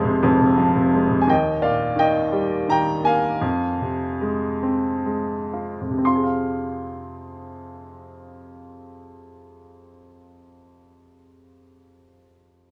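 Set in a moderate recital-hall reverb, this moody, cool fragment of a lyrical classical solo for a bright, woody upright piano, heard up front and spanning F1 to C6, moves in a rubato 3/4 between 59 and 87 BPM in F minor, tuned to A4 = 443 Hz, shifting from Fm to Ebadd9 at 1.3 s, slowing down until 6.0 s, and returning to Fm along the way.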